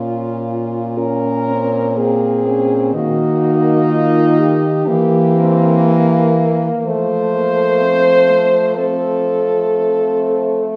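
This short classical excerpt for horn quartet opens with three French horns together: a mellow melody horn placed up front with vibrato and a punchy edge, a second line that sits more distant in the room with light vibrato, and a warm bass horn, also up front, anchoring the low register. At 1.0 s a fourth horn joins with a soft-attacked, roomy accompaniment part carrying a gentle vibrato. The mood is yearning and melancholic, and the tempo stays slow and rubato in 4/4, between 51 and 65 BPM. The harmony moves from B-flat minor through E-flat minor and E diminished before arriving on F major. The quartet is heard from further back in a recital hall, whose reverb lingers around the long, lyrical lines.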